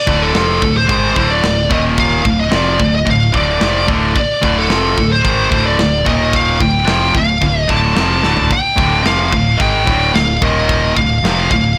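In a straight 4/4 pulse, this aggressive, relentless heavy metal excerpt drives on a tight metal drum kit with bright cymbals, a medium-tuned snare, toms and a clipped kick, fitting in a drum fill at 8.2 seconds. Two distorted rhythm guitars grind out the riff over Dm and Eb5: one tight and up front, the other a high-gain layer in the background, with a growly, direct picked bass underneath. An up-front, high-gain lead guitar with a warm tone carries the melody throughout, and the dry, blown-out mix is overdriven.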